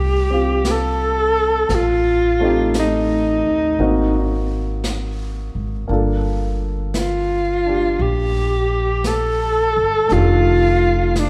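The recording sits back in a moderate scoring-stage reverb, heard from further back in the room, and this short cut from a longer piece has a late-night, intimate feel. It is a slow jazz ballad at 57 BPM in 4/4 with swung eighth notes, tuned to A4 = 441 Hz. A breathy alto saxophone carries the melody up front, a jazz-style solo line with subtone, vibrato, scooped notes and a smooth top. A baby grand piano accompanies with a warm, natural tone, short sustain and audible action noise, while a woody pizzicato upright bass on steel strings sits close beneath. A jazz kit played with brushes enters at 0.6 seconds, its brushed snare and hi-hat tucked in softly behind, as the harmony moves from F69 through Am7b5, Ab9 and Gm9 to F13.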